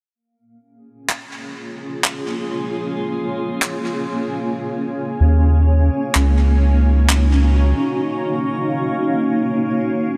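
A round, deep analog bass with tube saturation arrives at 5.2 s and sits up front in this eerie, intricate IDM excerpt in Bb minor at 95 BPM, holding sustained low notes under the Ebm7 chord that follows the opening Bbm7. Above it, a cloudy granular pad with its own reverb spreads blurred, detuned, evolving chords with a slow attack, while pitched-up, gritty electronic handclaps, overdriven and fed through digital delay, sound until 7.2 s. The mix is dense and heavily limited with light reverb, and the pad carries on alone through the closing break.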